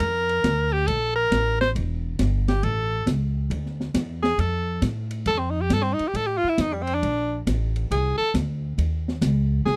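A bright, punchy tenor saxophone takes the solo across this short excerpt, its forceful jazz-style tone carrying vibrato and a smooth top as it moves between G3 and C5. The tune is playful, relaxed small-group swing and bop at 137 BPM in 4/4, with a swung eighth-note feel. An upright bass played pizzicato sits up front with a woody tone and steel-string presence, anchoring the low end. An open jazz drum kit in a small room supplies hi-hat, ride cymbal, snare and kick, with dark cymbals, a high-tuned snare and a boomy kick giving it a smooth, shadowy color. The harmony moves from Bbmaj7 through Em, A, Dmadd9 and F before returning to Bbmaj7 and landing on Eb5. The sound is dry and close, in the manner of a 1970s studio session with little reverb, and the passage is cut from a longer piece.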